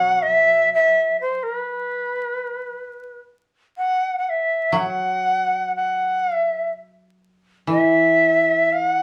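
Vinyl crackle and a wet studio reverb frame this nine-second cut from a longer piece of Japanese traditional chamber music, heard from further back in the room. Austere and still, it drifts in a rubato 2/4 at around 61 BPM. An airy, reedy end-blown bamboo shakuhachi sits up front with the melody, its tongued notes carrying a chiff and vibrato, while a mellow, woody koto plucked with fingerpicks gives dry accompaniment beneath it throughout.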